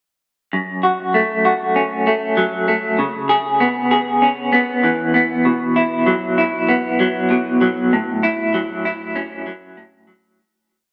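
A cinematic, soaring post-rock piece for solo electric guitar through a small old amp, its bright, twangy, slightly broken-up tone up front as picked arpeggios shimmer with tremolo and digital delay over F#m, C#m7, Bsus4 and A6, all bathed in a lush hall reverb that gives it a big arena sound before a fade-out from 7.9 seconds to the end at 10.4 seconds.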